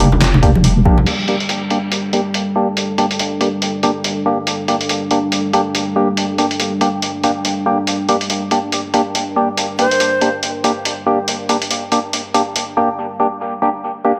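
Brooding and meditative, this deep dubstep excerpt moves in a swung half-time feel. A dark, detuned ambient pad holds sustained chords beneath a hollow, nasal organ stab that sits up front with dub echo and a filter sweep from 1.1 s, while a deep, wobbling square-and-sine bass, compressed and up front, drops out after 1.1 s. Muffled, pitched-down sampler drums carry snare, hats, handclaps and crash, joined briefly by a thumpy kick and close, ringing congas near the start, and a breathy, reedy ney with vibrato sounds a single C5 through dub echo at 9.8 s, all inside a lush hall reverb.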